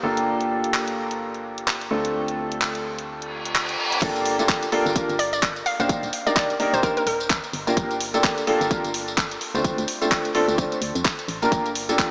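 A woody upright piano sits up front in this energetic, soulful piano house excerpt, its riff carrying long sustain, lush chorus, sidechain pumping and a diffuse ambient delay. Beneath it, a dark, organ-like FM bass with a percussive, decaying tone pumps along, while a warbling, nostalgic tape-like pad hovers very quietly through the opening Gm9 and Dm7 chords. A layered house drum kit of crash, handclaps, hi-hat and tambourine enters almost at once with a swung sixteenth feel, and a reverse cymbal in the background leads into the drop at 4.0 s, where an impact lands and a punchy electronic kick joins. Soon after, a hollow, bouncy square-wave pluck with a sub octave, chorus and delay adds a brief, mellow melody that ends at 7.5 s. The dreamy mix is soaked in cathedral-like reverb and has a small-speaker character.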